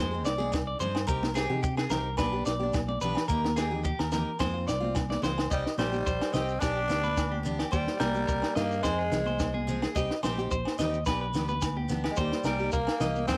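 A raspy, growling tenor saxophone takes the melody up front from 5.5 seconds, its close-miked, gritty tone carrying a pop-style vibrato over a bittersweet highlife guitar band groove in straight 4/4. Before it arrives, a twangy clean electric guitar plays bright arpeggios with a warbly pitch drift and slapback echo, while a boxy parlour steel-string acoustic guitar picks out the accompaniment beneath it. A dark, round fingered electric bass anchors the cycling minor-key progression, and a compact cocktail drum kit with a punchy kick and high-tuned snare comes in just after the start, marking the move into the second section with a fill. Shekere, congas and agogo bells sit in the background, the grainy shekere close and dry, the congas ringing with a vintage, band-limited character, and the agogo bells compressed and saturated. A light reverb rounds out the warm sound of this cut from a longer piece.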